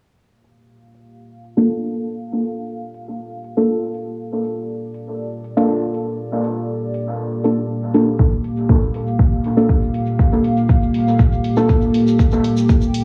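A hazy, cavernous dub techno excerpt in G minor at 120 BPM opens at 0.2 seconds with a moody, detuned analog pad holding a sustained Gm7 chord under chorus, sidechain pumping and a filter sweep, is soon joined by a faint electronic hi-hat, and from 1.6 seconds gains a soft, mellow chord stab up front that decays through chorus, phaser, its own filter sweep and dub echo, before a deep, layered electronic kick and a grainy, close tube shaker arrive at 8.2 seconds, all set in a moderate echo-chamber reverb.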